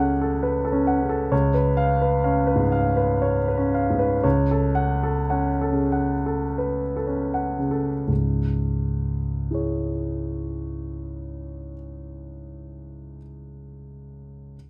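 A slow triple metre pulls and stretches under heavy rubato, and the music slows down through its first 8.1 seconds, giving this brief fragment of a longer romantic character piece a brooding, stormy air. A single concert grand piano carries everything from 0.0 to 14.6 s, placed up front with a clear, natural tone, deep bass and long sustain, reaching from C#2 up to F#5. The harmony opens on F#m/C#, moves to C#7, returns to F#m/C#, and then settles on C#m as a new section begins at 8.1 seconds. That second passage runs until 12.3 seconds. Light reverb surrounds the piano.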